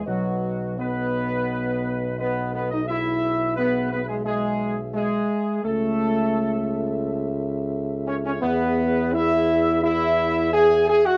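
A classical ceremonial fanfare in E major, this solemn yet triumphant excerpt moves at a stately 86 BPM in a straight 4/4 and lasts about 11 seconds, cut from a longer piece. A mellow trumpet section carries the melody throughout, its tone vintage and touched with light vibrato. Beneath it, a close-miked French horn section and an up-front trombone section hold sustained chords with tight, classical-style ensemble playing, the trombones sounding warm. A roomy, distant tuba anchors the bass with its own vibrato. The harmony travels from B through E/B and A/C# before settling on E, all within a dark production and moderate studio reverb.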